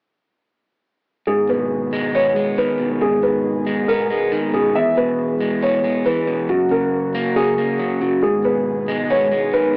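From 1.3 seconds, a dark concert grand piano carries the melody up front, mellow and intimate with audible action noise, deep bass and a boxy tone, while a slightly broken-up electric guitar, fingered and close, plays accompaniment beneath it. Set in the background, a smooth, detuned sawtooth pad with chorus and a soft attack holds sustained chords through a G#m, E, F# progression over a tense half-time hip hop feel. This brief cut from a longer piece has a worn cassette character and an AM radio tone, with light studio reverb lending a dim home-recorded mood.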